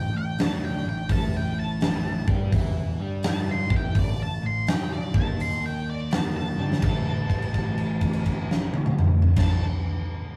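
Blues rock in a power-trio vein with a southern rock lean, this short cut from a longer piece has a smoky, brooding mood and a swung feel. A dark, fuzzy octave lead guitar carries the melody in its upper register from the start. A crunchy, double-tracked rhythm guitar plays a riff in the background, and a growling, bright electric bass adds an overdriven low end. An acoustic rock kit, dark and smooth with a fat snare and punchy kick, sits up front and comes in at 0.4 s. A drum fill at 6.5 s leads into a new section over an A minor chord, where the music rests on a held note until 9.3 s. The sound is rough, like a rehearsal room with a moderate booth ambience.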